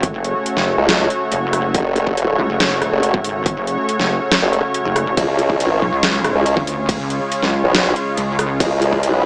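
A half-time 4/4 groove at 140 BPM drives this menacing, heavy wobble dubstep excerpt, set in F# harmonic minor with a tuning of A4 = 435 Hz. A punchy, overdriven electronic kick sits under an up-front dubstep kit of deep snare, metallic hi-hats, ride cymbal and rim click, both kits layered and re-recorded in a small room. Up front, a pulsing, mellow pluck wobble bass gives sine-based weight with chorus and overdrive. At 0.8 s a louder formant-sweep wobble bass enters, a saturated, compressed blend of pulse wave and sine pushed forward with a formant filter, chorus and overdrive. Above them, a lush, bright pad of detuned sawtooth and square-wave unison voices sustains chords with slow attack and long release, breathing with sidechain pumping as the harmony moves from F# minor to C# at 5.2 s. A moderate digital room reverb and a small-speaker character give the whole passage a boxy, confined sound.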